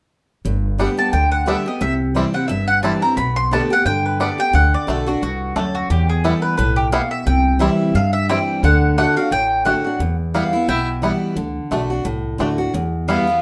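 Driving and virtuosic, this bluegrass excerpt in G major runs at 176 BPM with a swung feel, as an up-front, woody mandolin carries the melody alongside a twangy, fingerpicked banjo over a bright, picked dreadnought guitar with audible finger squeak and a dark, thumpy pizzicato upright bass, while a bowed fiddle with light vibrato adds brief second-line touches at 10.7 seconds and again at 13.1 seconds, all set in a moderate studio reverb as the chords move from G through C, D and Em.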